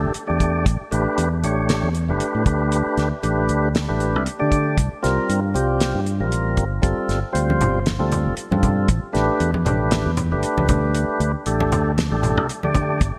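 The tonewheel organ comps warmly, full and clean through a slow rotary speaker, spelling out suspended chords such as G7sus2, A9sus4 and Dsus4 from up front in this slick, soaring slice of electric jazz fusion cut from a longer piece. Underneath, a fingered electric bass sits equally forward with a round, punchy, amped tone, while a damped 70s drum kit brings a dry, dark sound with a fat snare, tight kick and rolled-off top on hi-hat, kick and snare. The groove moves at 117 BPM in 4/4 with a light swing on the sixteenths. At 7.5 seconds, low-tuned congas join in the background, ringing and close with hard hands. The whole passage sits in a lush hall reverb and carries a bright 1980s-style digital sheen, with lossy compression artefacts audible.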